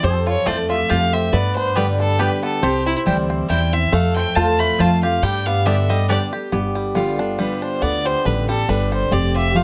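A clear, earthy fiddle carries the melody up front in this joyful, driving bluegrass piece in three, cut from a longer work, over a nasal slide line from lap resonator guitar, a full-bodied picked steel-string acoustic guitar, twangy banjo arpeggios and woody pizzicato upright bass, with bright mandolin stabs entering at 0.5 seconds and stopping at 6.2 seconds, captured by close, detailed microphones in light reverb.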